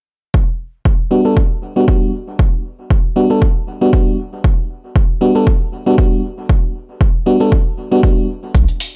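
A dry, gritty hardware recording in digital ambience carries this smooth, moody deep house excerpt at 117 BPM with a light 16th-note swing, where a punchy, layered electronic kick drives from 0.3 seconds and a soft, full-bodied FM electric piano plays dark Gmaj7 stabs through chorus, sidechain pumping, a low-pass filter and analog delay until the chords drop out at 8.3 seconds, after which a round, deep analog bass sounds a brief B1 beneath the kick alongside a rolled-off acoustic hi-hat, and a tape-tinged electronic hi-hat enters in the final moments.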